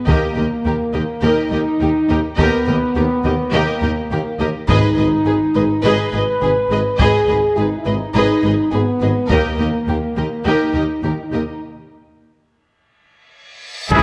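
A dark French horn section opens this epic, heroic orchestral film score at 104 BPM, holding chords up front as distant violins carry the melody over a closer, woody second violin line and lush violas, while cellos, double basses and a very quiet tuba hold the bass in the background. Close, dry taiko drums struck with heavy sticks drive beneath, joined by soft timpani near the start and again at 4.7 seconds, as the harmony moves from D# to G# minor and back before a break at 11.6 seconds. A huge reverse cymbal and impact lead into a final hit at 13.9 seconds, where a clear solo trumpet stab, a smooth string section and a barely audible trombone section arrive together.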